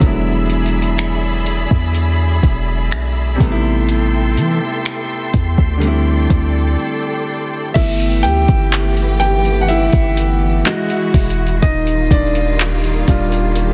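A straight 4/4 groove of soft kick, finger snaps, handclaps, metallic hi-hat and crash from an up-front electronic drum kit, roughened by vintage 12-bit sampler grit and soft clipping on the snare, anchors this smooth, romantic contemporary R&B fragment, where a deep, boomy 808-style bass sits close beside a clear, vintage-toned grand piano and a distant, woody string section holds lush, dark sustained chords in a dry, dense, heavily limited mix, until a break at 6.8 seconds gives way to a piano solo from 7.8 seconds over chords moving through G69, Emaj9 and Ebmaj9.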